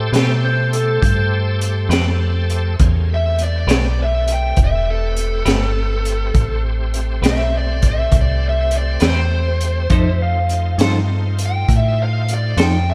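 A mournful, brooding slow blues in 12/8 at 68 BPM, this excerpt sits in A minor, moving from Am9 to F7 at 9.9 seconds. A crunchy breakbeat kit with a punchy kick and high-tuned snare sits up front beside a metallic, fast-attack FM bass. Meanwhile, a clean electric guitar with harmonic tremolo and slapback echo plays accompaniment, and a bright tonewheel organ holds shouting, lightly overdriven chords through a slow rotary speaker. From 3.1 seconds a dark, overdriven lead guitar carries the melody, and a twangy lap steel with slapback echo adds slide lines and volume swells in brief passages at the start and around the chord change.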